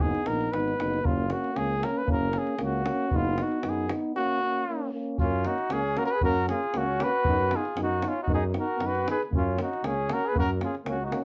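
A warm trumpet leads this wild, virtuosic Balkan brass band cut, sitting up front with light vibrato, a smooth top and a classical polish as it carries the melody. Beneath it, two euphoniums fill in the accompaniment, one with a gentle vibrato and the other mellow yet punchy, set distant and roomy in the background. A soft-toned tuba anchors the bass, while a tight, close acoustic davul drives the 2/4 pulse at 116 BPM with a slight swing on the sixteenths. At 5.2 seconds a clear flugelhorn with a soft attack and vintage character joins as a second line, as the harmony in F# major sways between B over F# and F#. The whole passage is bathed in a wet studio ambience and colored by worn, warbling cassette tape with drifting pitch, giving this fragment of a longer piece an aged, hazy patina.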